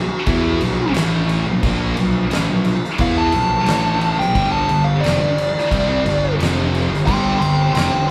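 Stoner and doom metal with a heavy, brooding mood, this short cut from a longer piece sits in a straight 4/4 and is carried throughout by a dark, fuzzed lead guitar solo placed up front. Beneath it, a bright, double-tracked high-gain guitar sits in the background while two very quiet fuzz guitars, one warm and one dark, play the riff in the same low register. A punchy, overdriven fuzz bass, heard both direct and amped, anchors the bottom end. The oversized low-tuned drum kit comes in at 0.3 s and stops at 7.9 s, up front, gritty and saturated, with a fat snare, a punchy kick and dark crash cymbals in a bright, pumping stone room. The harmony moves from B5 to G5 at 4.4 s, and the band sounds as if it is playing live in one room, with a moderate large studio reverb lending weight to the whole sound.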